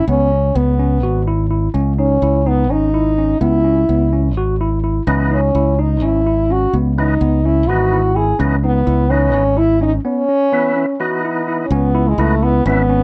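Progressive instrumental in 7/8 at 253 BPM, tense and brooding in C# minor, with a soft-attack French horn carrying the melody over a bright tine electric piano's clean arpeggios and a punchy, up-front fingered electric bass, opening on a C#m7 chord. At 5.1 seconds a full, thick tonewheel organ joins with third-harmonic percussion, light overdrive and a fast rotary speaker, and a break at 10.1 seconds leads into a new section at 11.7 seconds. The close, dry 1970s-style studio sound carries light reverb, and the horn has a distant, roomy quality with gentle vibrato.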